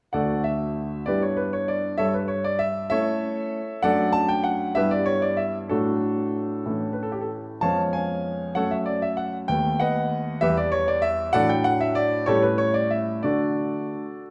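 A clear concert grand piano opens at 0.1 s, playing alone in a playful, cheerful classical-period sonatina in D major, moving in a straight 6/8 at 64 dotted-quarter beats per minute. Sitting up front with a natural tone and deep bass reaching down to D2, the piano travels through a chain of harmonies, touching F#m and B7/D# before settling back onto D at 13.2 s. A wet recital hall reverb and a dark production surround this brief excerpt, which is cut from a longer piece and ends at 14.3 s.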